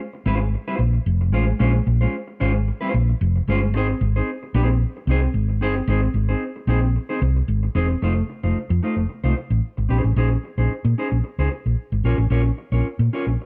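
Glamorous and sultry, this disco excerpt in Bb minor moves at 112 BPM with a straight 4/4 feel. A clean, mellow electric guitar enters at 0.1 s as accompaniment, and a round, amped hollow-body short-scale bass, played with the fingers, follows at 0.3 s, sitting louder and up front. The production is dark and dry, and at 8.0 s the harmony moves from Bbm9 and Ab into F7, Bbm11 and a rootless Gbmaj7.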